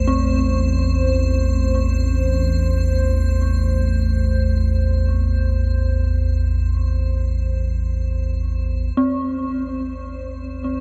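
Bathed in a huge ambient reverb, this ominous, dark ambient fragment from a longer piece sets a deep, rumbling drone up front with lush chorus, while a crystalline glass pad fades out over the first 9.0 seconds and an eerie, inharmonic detuned synth bell traces mellow arpeggios through chorus, phaser and delay.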